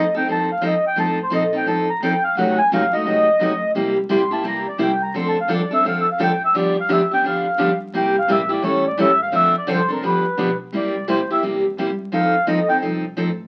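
Acoustic string swing in the jazz manouche style, this lively, playful fragment cut from a longer piece moves at a brisk 172 BPM in 4/4 with a swung eighth-note feel. A mellow accordion sits up front carrying the melody as a solo throughout, its reedy, vintage tone colored by a slow beating in the reeds and a band-limited character. Beside it, a picked steel-string acoustic guitar provides up-front accompaniment with the warm tone of fresh strings and the full body of a dreadnought. An upright bass plucked on gut strings stays in the background, woody and thumpy beneath the other two. The harmony runs through jazzy changes such as F7, F#dim7, A7b9 and Dm7 to G7, and the whole performance carries the crackle of a very old 78 rpm record inside a moderate club reverb, with the accordion stopping at 12.8 seconds and the bass ringing on until 13.5 seconds.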